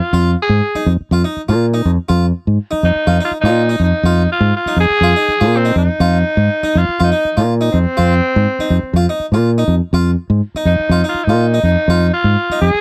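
A raspy, gritty tenor saxophone carries the melody up front in this defiant, driving afrobeat excerpt, its vintage pop-style solo sitting over a single F7(no3) chord with a lightly swung sixteenth-note feel. Beneath it, a punchy, amped fingered electric bass anchors the low end while a full, plucked French-style harpsichord with two sets of strings spins arpeggios. The dry, close 1970s-style studio sound carries a touch of light reverb.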